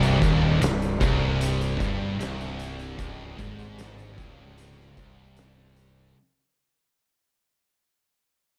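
Hypnotic and sludgy, this short stoner and doom metal excerpt crawls at 76 BPM in a straight 4/4, sitting on C minor and fading out across its 6.2 seconds. An oversized, low-tuned acoustic drum kit sits up front with a fat snare, punchy kick and hi-hat, its saturated, gritty sound rolled off at the top and set in a bright stone room. Three guitars grind through the riff together: a bright, double-tracked high-gain guitar, a dark fuzz guitar in the background, and a second fuzz guitar mixed very quietly. Beneath them a fingered electric bass growls with overdriven fuzz, heard both direct and through an amp. A percussive tonewheel organ holds sustained chords in the background, its full, clean tone marked by key click and second-harmonic percussion, turning slowly through a rotary speaker. Light reverb ties the heavy mix together.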